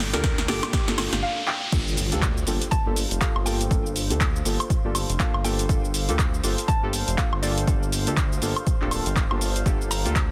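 Dense, heavily limited and lightly reverberant, this moody deep house excerpt at 121 BPM in G minor swings its sixteenths over a punchy analog drum machine with crash cymbal, snare drum, handclaps, hi-hat, shaker and woodblock. A tape-warm electronic kick follows, while a smooth, nasal synth bass with tube saturation and a soft, warbling chord stab opening on Gm9 sound from the very start, both pumping under the sidechain along with a lo-fi, nostalgic tape-like pad. The brief build-up carries a drum fill, a background riser, a barely audible bowed violin section, a breathy alto saxophone phrase and a very quiet dark analog pad; a woody, round mallet-like synth pluck takes the melody from 1.2 seconds with chorus and delay, and the drop at 1.7 seconds lands with an impact.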